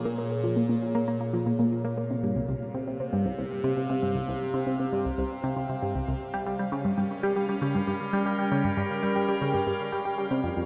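Hypnotic and mysterious, this excerpt of ambient, sequencer-driven space music moves at 117 BPM in a straight 4/4, with a tight, driving sequenced synth riff running from 0.1 seconds, its mellow, wave-folded sawtooth and pulse tones plucked through a filter and coloured by chorus, phaser and delay. Above it, an evolving wavetable pad sustains bright, morphing chords through phaser and its own reverb, shifting from Bbm7 to Csus4 at 2.1 seconds and to Gdim at 6.2 seconds. A very quiet, bubbling stepped-filter texture with a resonant sawtooth edge enters at 0.9 seconds, and a huge, wet reverb gives the whole a dark, warm space.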